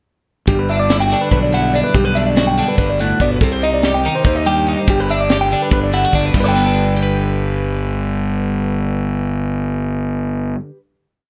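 Math rock and midwest emo in a fast, straight 7/8 at 287 BPM in G major, this short, bright and wistful piece moves from Gmaj7 through Cm and back before settling on a held G chord at 6.3 seconds. A bright, clean twelve-string electric guitar plays syncopated fingerstyle accompaniment up front, while a slightly broken-up lo-fi guitar through a small old amp repeats an arpeggio ostinato with slapback echo, and a round, punchy fuzz bass locks to the kick drum. An airy, polished fusion kit with a high-tuned snare and tight kick drives the 7/8 groove until 6.4 seconds, all within a dark, softly reverberant production.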